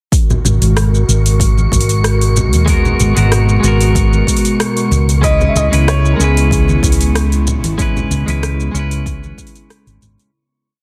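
An airy, breathy pad with chorus opens this relaxed sunset chillout piece alongside a deep house kit of overdriven metallic hats, rim click and shaker and a punchy electronic kick, while background congas, a high wind-like noise texture and an up-front, round hollow-body bass with a syncopated riff soon join. A bright, twangy clean electric guitar with digital delay enters at 2.7 s with held chords and syncopated pushes, and at 5.2 s a boxy, intimate grand piano, its action noise audible, adds a motif-based melody as the harmony moves from G#m9 to C#m7. The dense, heavily limited mix stays dry and smooth as the whole groove fades out from 6.9 s.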